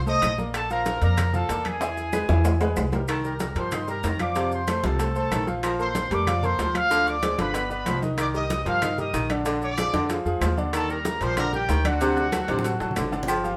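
Salsa with a danceable, passionate drive, cut from a longer piece: a clear, tight trumpet section carries the melody up front over a thumpy, gut-strung pizzicato upright bass and a bright, polished upright piano with short sustain. A breathy baritone saxophone with scooped notes and a whispered, intimate tone enters as a second line at 3.1 seconds. Low-tuned damped congas, ringing metal-shell timbales and agogo bells, grainy maracas, high-tuned bongos and cowbell, and very quiet woody claves fill the percussion bed in a moderate studio reverb, with drum fills at 1.8 and 12.0 seconds.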